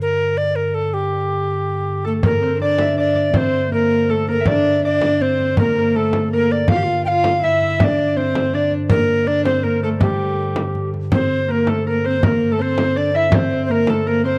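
A bright, airy alto recorder carries the melody up front over a soft, hollow stopped-flute organ drone from the very start of this driving, ancient-feeling medieval dance in G dorian at 162 BPM in 3/4; a ringing, fingerpicked concert harp in the background and a smooth, floating bowed viola da gamba join as second lines at about 2 seconds, and a compressed, saturated frame drum played with hard hands enters at 2.2 seconds, captured in a dry, close 1970s-style studio sound with light small-room reverb.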